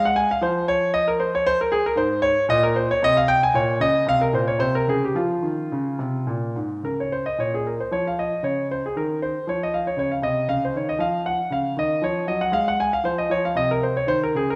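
A clear, present grand piano plays alone in an introspective, flowing baroque-style suite movement in triple time, its rubato phrasing moving through minor and major harmonies in a short passage taken from a longer piece. The instrument sits up front with long sustain, ranging from low to high register, and its opening phrase returns from 6.8 seconds before settling on a bare chord near 13.0 seconds. A moderate recital hall reverb surrounds the piano.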